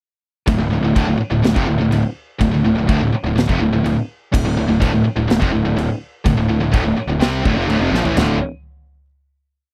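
Heavy metal at 125 BPM in D minor, aggressive and heavy, where three bright, distorted picked guitars (one fuzzed and double-tracked, one high-gain, one tight) grind out power-chord riffs in the background from 0.5 seconds while a warm, overdriven fuzz bass doubles the riff in driving eighth notes and an up-front acoustic drum kit with a punchy kick, medium-tuned snare, toms, crash and china cymbals holds a metal half groove, fires a fill at 7.9 seconds, and gives way to a final D5 chord at 8.2 seconds, all in a dry, close 1970s-style studio sound.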